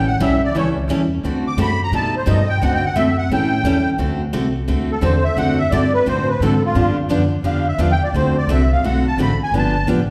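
Acoustic string swing in the jazz manouche style, swinging and playful, cut from a longer piece and set in a reverberant church or concert hall. A reedy, shimmering musette accordion sits up front and carries the melody as a solo throughout, while a bright, full-bodied picked jumbo steel-string guitar, also up front, supplies the accompaniment over a woody, thumpy pizzicato upright bass with dark gut strings. The harmony moves through dominant seventh chords such as A7, D7 and G7, with a Baug7 passing by at 1.9 seconds.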